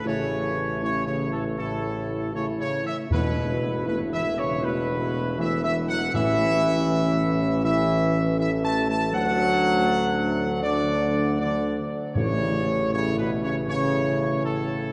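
A bright trumpet section carries the melody up front from the start over dark, smooth French horn chords in the background, clear trombones with light vibrato and a punchy, distant tuba, while round, soft-mallet timpani enter at 3.1 seconds in this triumphant, regal classical brass passage, cut from a longer piece and steeped in a cathedral's long, wet reverb with a warm, dark production.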